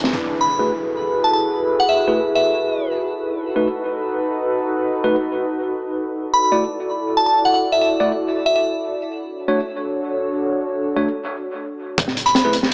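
Drum and bass with a jungle flavour, this dark, atmospheric passage is cut from a longer piece and spends most of its length in a beatless, suspended state. A warbling, detuned tape-like pad holds sustained chords up front with chorus and its own reverb, moving through F#m11, B7, E9sus4 and Dmaj7, while a tine electric piano plays stabs heard through built-in speakers, treated with a low-pass filter, dub echo and a filter sweep that runs until 12.0 s. An electronic impact marks the opening, and a glassy, crystalline FM synth bell carries the melody in short phrases, its bright, decaying tones treated with chorus and dub echo. A break arrives at 11.2 s, and at 12.0 s the crunchy breakbeat kit returns with its high-tuned snare, tight kick and hi-hat, joined by a thick, deep saturated sub bass sitting in the background. The sound is dry and gritty with a small-speaker character, a moderate plate reverb and small room ambience, and the drums carry a rolled-off top.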